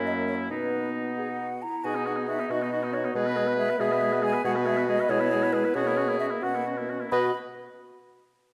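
Classical-period wind quintet movement in B major, spirited and graceful in a quick 6/8 at 90 BPM, where an airy, hollow flute with vibrato and a soft attack carries the melody over a clear oboe second line, mellow clarinet and French horn accompaniment, and an up-front, close-miked bassoon bass, all set in a moderate stage reverb with a dark production as the harmony moves from F#7 to B, E/B and F#7/B before settling on B5 near 7.1 seconds.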